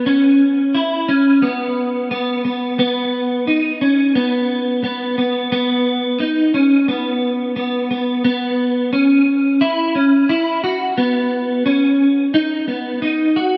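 The rhythm sits in a straight 4/4 at 88 BPM, giving this dream pop passage an unhurried, steady pulse. A lone clean electric guitar carries the whole excerpt from 0.0 to 13.6 s, staying within a narrow band from B3 to F#4. Its tone is dark and picked, placed up front in the mix and colored by ensemble chorus and analog delay. A plate reverb with a 3.5 s tail soaks the sound, lending the haunting, ethereal mood a floating, dreamlike depth. The music moves into a new section at 8.2 s, and the passage is cut from a longer piece.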